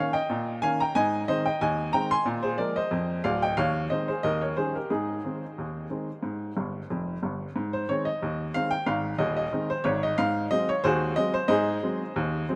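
Ragtime piano in Ab major, this playful, lively piece moves at 91 BPM in 2/4 with a light swing on the sixteenths. A solo upright piano carries everything from start to finish, ranging from a deep D1 up to C6, with a clear, woody tone, short sustain and audible action noise that keep it intimate and up front. The piano sits inside a huge ambient reverb with a long 8.1-second decay, a moderate wash that lends the close instrument a spacious halo. The harmony circles through Eb7, Ab, Bb7 and Ab/Eb before an Ab7 appears near the close. A short piano fill from 6.6 to 7.6 seconds links the opening strain to its repeat, and the clip stops at 12.6 seconds, cut from a longer piece.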